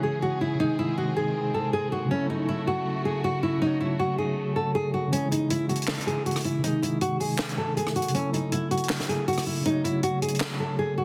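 Hard-hitting yet melancholic, this half-time trap and hip hop cut at 159 BPM in C# harmonic minor circles a C#m, G#, A6, F#m progression, led by an up-front, fingerpicked classical nylon-string guitar with tape echo over a bright, barky electric piano whose gritty overdrive and fast tremolo come through a combo amp. Smooth, bowed chamber strings with vibrato hold sustained chords until 5.1 s, when a compact cocktail kit takes over with dry, natural handclaps, hi-hat, rim click and a high-tuned snare. A moderate recital-hall reverb surrounds the parts, and heavy multiband compression gives the whole a dense, radio-like sound.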